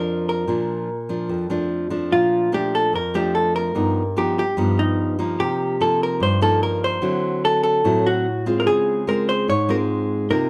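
A dark, clean vintage hollow-body jazz guitar, picked and compressed, carries the romantic, breezy melody up front in this bossa nova excerpt, while a bright, fingerpicked classical nylon-string guitar supplies accompaniment throughout under moderate studio reverb, moving from Bbmaj7 through G7alt, Cm7 and D9 to a Dbmaj7 at 8.7 seconds.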